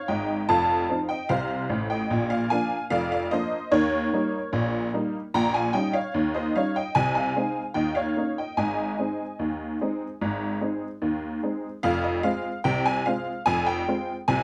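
A straight two-beat 2/4 pulse carries this jaunty, playful ragtime fragment, played entirely by a solo honky-tonk upright piano whose detuned, jangly, vintage tone sits up front in light reverb, moving through chords such as F7, Bb and Eb7 before shifting to a new section on Fm at 11.8 seconds.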